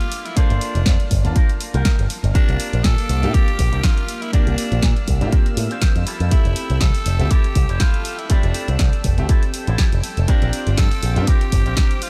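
A dry mix carries this sleek, sensual nu-disco cut from a longer piece, with a punchy electronic kick and a picked bass through an envelope filter sitting up front from 0.4 s, while a house kit adds hi-hat and snare in a small room reverb. A raspy, growling tenor saxophone takes the solo melody with light vibrato and delay over a clear baby grand piano, a thick, detuned unison pad with chorus, and a twangy guitar riff through an envelope filter with lush chorus, with the piano and pad pumping from sidechain and all three kept in the background. The harmony moves through Gm9, C9sus4, Fmaj9 and Bb69 on a lightly swung sixteenth-note feel.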